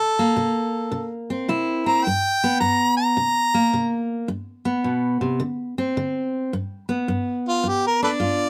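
A swung eighth-note feel in 4/4 carries this rollicking, swaggering acoustic country blues excerpt, where a warm fingerpicked steel-string guitar holds the accompaniment throughout while an up-front, clear harmonica plays a jazz-style melody full of tongue slaps and scooped notes, dropping out at 4.1 seconds and returning at 7.5 seconds for a short solo, the duo heard through close, detailed microphones with light reverb.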